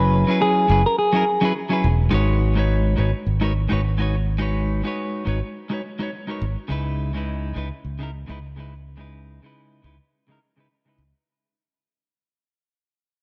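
A lightly swung 4/4 groove carries this smooth, relaxed sunset chillout excerpt, where a hollow-bodied semi-hollow electric guitar picks a brief delayed melody that ends at 1.5 seconds, a compressed clean electric guitar plays low-pass-filtered, delay-touched accompaniment through F#9sus4, G#m11 and C#m9, and a direct, up-front fingered electric bass holds the low end, all set in a dark, warm mix with a moderate plate reverb and fading out from 2.1 seconds.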